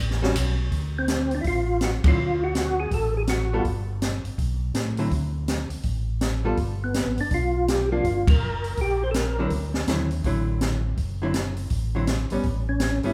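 A percussive tonewheel organ carries the melody in short phrases starting at 1.0, 6.8 and 12.7 seconds, its round, clean tone lifted by third harmonic percussion and coloured by chorus vibrato and a slow rotary speaker. This is a swinging, greasy soul jazz organ trio cut from a longer piece, moving at a brisk 164 BPM in 4/4 with a moderate swing on the eighth notes, centred on D mixolydian. Beneath it, a mellow tonewheel organ plays the bass line with the same slow rotary and chorus vibrato, while an acoustic jazz kit with dark cymbals, a high-tuned snare and a boomy kick keeps time on hi-hat and ride. A picked, hollow-body archtop guitar, electric and clean, comps through chords such as D7, G9 and Gm, and the band hits shared accents at 2.0 and 8.2 seconds. Every part sits up front, yet the whole group is heard from further back in a large studio room with a moderate reverb tail.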